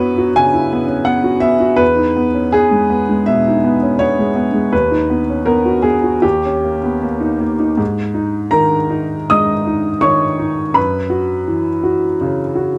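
Played rubato around 82 BPM in 4/4, this wistful, melancholic neoclassical minimalist piano piece in G# minor is a short passage cut from a longer work, carried by a solo upright piano spanning D#2 to D#6. The piano sounds clear, woody and a little boxy, sitting up front and intimate, with audible action noise caught by close, detailed microphones and a light reverb around it. Chords such as F#7sus4, Emaj7 and D#7 shape the opening section before it gives way at 7.8 seconds to a second section built on G#sus2, returning to F#7sus4 at 10.8 seconds.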